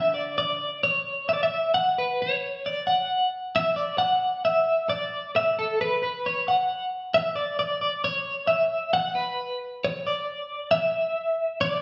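A clean, compressed twelve-string electric guitar with tremolo carries the uplifting, anthemic melody up front in this folk excerpt at 133 BPM in D major, while a dark fingerpicked steel-string acoustic guitar, finger squeak audible, sits in the background only for the opening 0.6 seconds, all heard live in a small room with a wet stone reverb.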